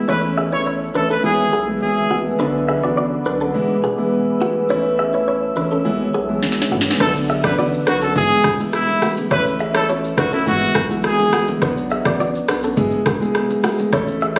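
A bright, up-front solo trumpet with pop-style vibrato and tape echo carries the melody in this sultry, mellow afrobeats passage, cut from a longer piece. Beneath it, an intimate concert grand piano with audible action noise and smooth, vintage depth plays the accompaniment, while a clean, twangy direct-recorded electric guitar picks a compressed riff through its own tape echo. A deep, saturated sine sub bass sits underneath, and during the opening a dark, warbling sawtooth pad holds slow-attack chords, thickened by chorus and built-in reverb and pumping against a sidechain. An electronic afro-pop drum kit arrives with a fill at 6.4 seconds, bringing a deep kick, sharp snare, crisp hats, rim clicks, shaker, toms and crash. At 7.0 seconds the trumpet returns and very quiet, close, dry congas and bongos join with hard-handed, ringing hits. The whole sounds like a phone recording in a small room, with club reverb and compression.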